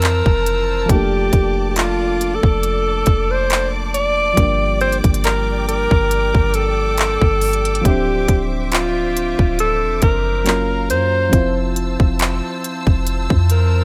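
Contemporary R&B at a slow 69 BPM with a late-night, moody feel, this excerpt puts a jazz-style alto saxophone up front, its vibrato and scooped notes floating over gentle, warbling electric-piano-like synth keys with chorus, distant lush bowed strings, a deep, boomy 808-style bass and a trap kit of handclaps, crisp hi-hat and hard-clipped kick, moving through chords from Fmaj7 to Gm7, Dm9 and F#maj7 in a digital ambience.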